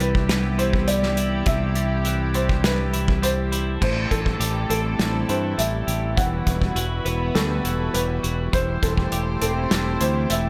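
Post-rock in A dorian at 102 BPM, this brooding, melancholic passage is cut from a longer piece and moves through Cmaj7, Am7, Emadd9 and C6/E over about ten seconds. A warm studio string section holds sustained chords with a reedy, gut-string tone and smooth top. Above it, a felt-muted upright piano plays soft, intimate arpeggios with audible action noise. A bright, twangy twelve-string electric guitar picks clean, compressed arpeggios, and both piano and guitar carry a slapback echo. Underneath, a growling fingered electric bass sits up front with punchy overdrive, and a loose indie drum kit with a tight kick, medium-tuned snare, hi-hat and dark crash cymbals pumps in a small room. Light reverb gives the whole ensemble a shared space, and the music shifts into a new section at 3.8 seconds.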